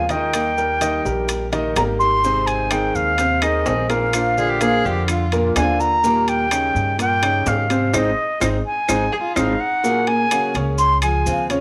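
Cuban son in a relaxed guajira vein at 126 BPM in Ab major, this brief cut from a longer piece sets an up-front, airy, reedy flute melody over fingerpicked archtop guitar with finger squeak, thumpy gut-string pizzicato upright bass, intimate piano arpeggios with audible action noise, ringing close timbales, grainy maracas, and woody background claves entering at 2.7 s, while an expressive bowed cello with vibrato and portamento adds a dark second line at 4.4 s, a band accent lands at 7.9 s, and the chords move toward Gbadd9 and Dbmaj7 in an echo-chamber studio ambience.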